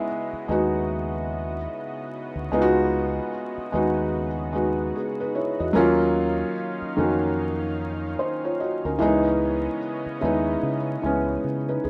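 A felt-muted upright piano, soft and intimate with audible action noise, sits up front over a thick, warbling, detuned pad with chorus in this melancholic, hazy lo-fi hip hop excerpt at 74 BPM with a swung 16th feel, while a round, punchy fingered electric bass enters at 0.3 seconds beneath chords moving from C#m9 to D#m9 and back, all in a rough home-demo mix with vinyl crackle and small-room ambience.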